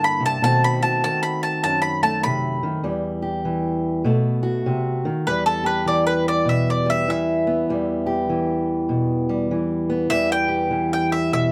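A mandolin's woody, double-stringed melody and a boxy, fingerpicked parlour steel-string acoustic guitar sit up front together from the start of this brooding, soulful acoustic country blues cut from a longer piece, swinging in 4/4 over chords moving between B7b9 and Em, with the mandolin soloing across two repeated passages, the second beginning at 5.3 seconds, in a dark production with light reverb.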